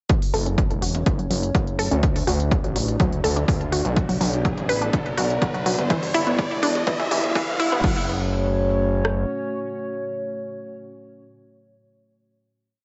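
A punchy four-on-the-floor kick and rim click drive this short, hypnotic and melancholic melodic techno piece, joined by smooth, pumping hi-hats, toms and crash cymbal, while a gritty, saturated synth bass plays a dotted rhythm and a lush, detuned unison pluck spins a 12-step arpeggio that drifts against the bar. Beneath them, a deep, moody analog pad holds sustained chords with subtle chorus, and a filter sweep on the arpeggio shapes a build-up with a drum fill, joined by a riser from 2.6 seconds. At 7.8 seconds the build gives way to a final chord; the bass and kick carry on briefly, and the pad rings on in a lush hall reverb until 12.3 seconds.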